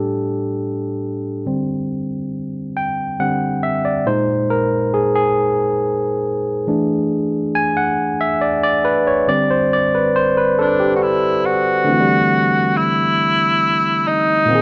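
A barky, lightly overdriven tine electric piano plays alone for the first 10.6 seconds of this tender, intimate R&B excerpt in D mixolydian, moving through suspended seventh chords at a slow 46 BPM in 6/8, before a breathy tenor saxophone enters up front at 10.6 seconds with a whispered, subtone jazz melody full of vibrato and scooped notes, all set in a dark small room with light reverb.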